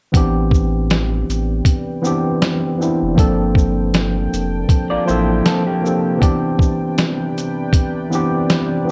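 Opening together, a worn, slightly out-of-tune tine electric piano with cassette-tape coloring, a thick saturated sub bass and a muffled, pitched-down sampler-style drum kit with a thumpy kick, medium-tuned snare, hi-hat and shaker set a melancholic, reflective lo-fi hip hop groove at 79 BPM with a light 16th-note swing over Am11, Gm11 and Cmaj9; a deep, dark ambient pad with chorus and a long release enters beneath at 1.3 s, a slightly broken-up electric guitar through a small old amp adds a brief tape-echoed second line from 4.9 s, and the bass stops at 5.4 s in this short excerpt with a softly dulled top end.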